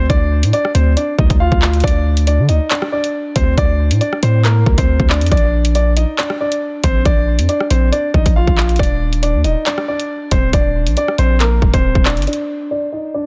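This drill cut runs at 138 BPM in 4/4 with a half-time feel, its electronic drum kit up front from 0.1 s, pairing a hard-clipped kick with metallic hi-hats, handclaps and rim clicks. Beneath it, a long, sustained 808-style bass with a sine tone and fast attack decays into deep, mellow sustain, ranging from Eb1 to D3 and sitting prominently in the mix until 12.3 s. A dark, smooth grand piano carries the melody between Bb3 and F5, its vintage character shaped by a low-pass filter and delay, and it rings on alone until 13.3 s. The mood is dark and ominous, with the harmony moving from an open start to Bb at 5.3 s and Eb5 at 8.8 s. Digital ambience surrounds the parts, and the dense, heavily limited modern master gives this fragment of a longer piece a loud, compact finish.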